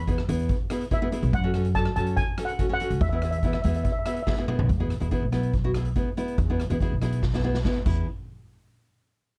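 A dry, dark-toned mix carries this carefree, bouncy calypso, cut from a longer piece, moving at 142 BPM in E major over E and F#m chords. A shimmering, mellow steel pan played with soft rubber sticks carries the melody until 4.4 seconds. Beneath it sit a woody, thumpy pizzicato upright bass, a fingerpicked nylon-string guitar with audible finger squeak, and an airy, polished street-band drum kit with a boomy kick and medium-tuned snare, whose fills arrive at 4.3 and 7.2 seconds before the band stops at 8.1 seconds.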